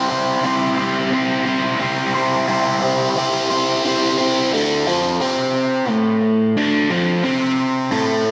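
A lush hall reverb soaks this dreamy rock recording, giving a short cut from a longer piece a trippy, hazy air. The only part is a solo electric guitar, overdriven and picked, with a biting, bright edge; it is double-tracked and sits up front in the mix. Phaser and tape echo color the guitar, and its lines span from D2 up to C5. The music moves in 6/8 with a straight feel at 59 BPM, counted in dotted quarters. The harmony rests on C before shifting to D5 at 4.5 seconds, and the guitar carries on until the cut ends at 8.3 seconds.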